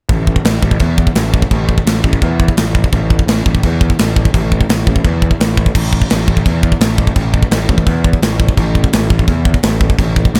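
A straight 4/4 pulse at 170 BPM drives this aggressive, epic heavy metal excerpt, where a tight, airy, polished drum kit with bright china and crash cymbals, a medium-tuned snare and kick drum sits up front from start to finish beside a growly, fuzzed, overdriven picked electric bass in a low register, the whole mix carrying a light reverb.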